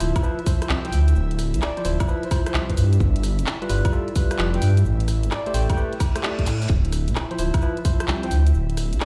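A bouncy, skippy UK garage groove in a two-step feel opens on a dark, detuned saw bass sitting up front, a garage drum kit of cabasa, handclaps, hi-hat, rim click and woodblock, barky tine electric piano stabs through a combo amp, and a soft, airy pad holding sustained chords in the background. A tight, tape-warm electronic kick joins at 0.2 seconds, and the bass beneath it is deep and rumbling with a beating, detuned edge. The electric piano's bright, clean stabs carry a digital delay, while the pad's breathy chords are treated with chorus and sidechain pumping. At 0.8 seconds a breathy, flute-like synth lead enters with vibrato, lush chorus and delay, staying soft in the background. The chords move from Dm9 through G7 and Am7 back to Dm9, a brief electronic reverse cymbal arrives at 6.0 seconds, and the whole excerpt sounds as if played on a big sound system in a bare room with large studio reverb.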